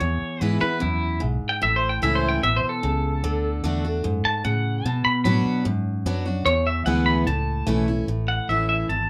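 Heartfelt and down-home, this brief honky-tonk and classic country excerpt in A major moves at a straight 149 BPM, with a bright, clean pedal steel guitar played with fingerpicks and volume swells singing the melody up front over a full-bodied picked dreadnought acoustic guitar and a dark, round, foam-muted vintage electric bass in a small room, the steel carrying a solo until 8.1 seconds as the chords move from E through A, D and Bm back to E and A.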